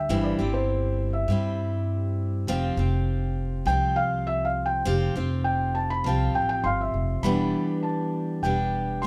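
Lightly reverberant and captured as a band playing live in one room, this gentle, nostalgic acoustic folk excerpt at 101 BPM features a soft, intimate felt-muted upright piano carrying a solo melody through 7.2 seconds, over a full-bodied picked steel-string acoustic guitar and a woody pizzicato upright bass, all three sitting up front, as the harmony moves from C/G to Fsus2 and then Em7 when a new section begins.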